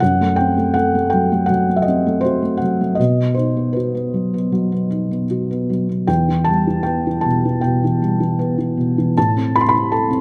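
Melancholic and reflective, this short classical passage, cut from a longer piece, features a lone felt-muted upright piano whose thick felt gives a soft, dark, intimate tone, with the action noise audible up close. Played with rubato, the lyrical line spans from E2 to C6, moving through F#dim, B, Em and Am. Detailed close microphones keep the piano up front while a moderate recital hall reverb adds natural depth.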